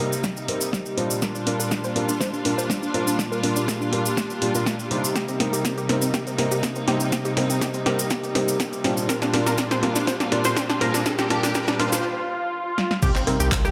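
Emotional and driving, this 122 BPM progressive house build-up, cut from a longer piece, sets rich, smooth bowed strings with vibrato under a tight, detuned sawtooth synth arpeggio that carries chorus, dub echo and a filter sweep, while soft, felt-muted upright piano stabs with audible action noise pass through a low-pass filter and dub echo, and strings, synth and piano pump to the sidechain. An overdriven deep house kit with crash, handclaps, hi-hat, rim click and a punchy snare sits up front over a deep electronic kick in the background, with a grainy, bright cabasa and a very quiet electronic riser rising from 8.7 seconds, all set in a lush hall reverb over a Gm7/Bb chord. After a drum fill and a break from 12.0 seconds, the impact lands at 13.0 seconds on Cm7 as a fat, thick, tube-saturated analog bass enters on a low C.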